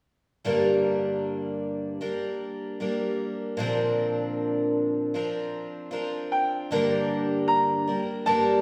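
A picked twelve-string acoustic guitar opens this short, intimate folk excerpt, its shimmering, octave-doubled tone sitting up front as it moves from G minor to a Bbadd9 chord and back at 6.7 seconds. At 6.3 seconds a brilliant, woody upright piano enters high in its range with a brief melody, lending a melancholic lift to the close. A resonant recital-hall reverb surrounds both instruments, giving the performance the airy, natural feel of a church or concert hall.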